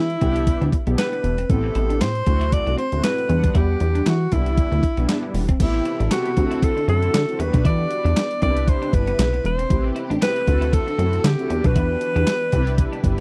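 A dry, close recording in a 1970s studio style frames this short cut from a longer early-eighties boogie funk piece, late-night and funky at 117 BPM in 4/4 with a light swing on the sixteenths, in A dorian. Up front, a breathy alto saxophone carries the melody in a jazz style, its subtone colored by light vibrato and scooped notes, while a plucky analog bass with a fast, decaying filter pluck drives the low end. A crisp 8-bit drum machine, overdriven and re-recorded in a small room, punches out thumpy kick, snare, handclaps, hi-hat and crash cymbal. Mellow synth brass, round and detuned with chorus and vibrato, fills the accompaniment, and a clean, twangy electric guitar picks a bright riff in the background through analog chorus. At 5.6 seconds a very quiet, lush studio string section enters with smooth bowed chords, as the harmony keeps cycling through Cmaj9, Am7, D7 and Em7.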